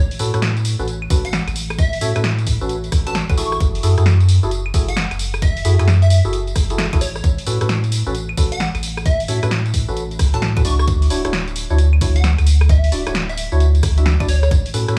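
A deep, saturated sub bass opens this soulful, sunny two-step UK garage excerpt at 132 BPM in A major, joined by a punchy analog drum machine of snare, claves, hi-hat, rim click and tambourine, hollow organ-like stabs with dub echo, an electronic kick drum from 1.1 seconds, and a bright, detuned unison lead with phaser from 1.2 seconds, all moving through A6/9, F#m9 and Dmaj9 chords in a light small-room reverb.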